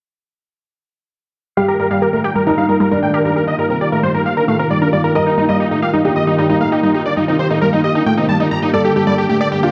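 At 1.6 seconds this emotional, euphoric trance excerpt at 134 BPM arrives all at once: a huge, detuned supersaw lead carries the melody up front through a low-pass filter sweep and delay, over a thick, chorused unison pad holding Ebadd9 before moving to Gmadd9 at 8.7 seconds. A punchy, bright sawtooth pluck spins arpeggios through dub echo, while a mellow, intimate grand piano with audible action noise adds a second line with delay. The whole sits in a wet scoring-stage reverb with a dark, warm production.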